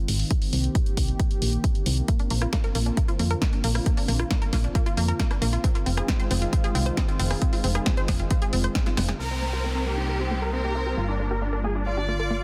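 Driven by a steady 135 BPM pulse of tape-warm kick and punchy analog hats, rim click and snare, with sidechain pumping on the hats, this emotional, soaring uplifting trance clip in C minor layers a thick, warbling detuned pad with a filter sweep, a round, dark FM bass and a lush pluck arpeggio with delay entering at 2.1 seconds, before a drum fill hands off at 9.2 seconds to a huge, euphoric supersaw lead with digital delay and a filter sweep, a focused, close violin section playing a second line with vibrato, and an electronic downlifter, all within a dense, heavily limited modern master.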